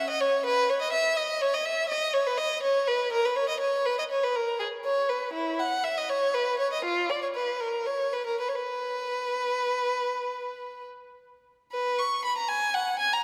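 Radiant and flowing, this brief passage cut from a longer piece is a baroque-style suite movement for unaccompanied violin in B major, moving in 12/8 at roughly 66-84 BPM counted in dotted quarters. A single bowed violin carries everything as the solo voice, its rich tone sitting up front and ranging from E4 up to C#6. The playing is expressive and rubato, colored by vibrato and portamento that give the lines a singing, elastic quality. A church acoustic with a long 3.0-second reverb tail surrounds the instrument, lending the sound a resonant, spacious glow. Around 11.7 seconds the music shifts into a new section that runs to the clip's end at 13.2 seconds.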